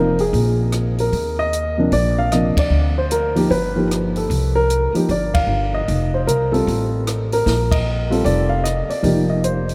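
A sophisticated, swinging jazz piano trio excerpt in Bb major at 152 BPM, with a dark, mellow baby grand carrying the melody up front, its intimate tone marked by audible action noise and short sustain, over a woody pizzicato upright bass on steel strings. A compact cocktail kit enters at 0.2 s with a high-tuned snare, tight kick, hi-hat, rim click and dark ride cymbal, and the band lands accents together at 2.5, 5.3 and 7.7 s. The whole trio sits in a vast, echoing cathedral-like space with a long reverb tail, moving through altered and suspended harmonies such as G7alt before settling on F5.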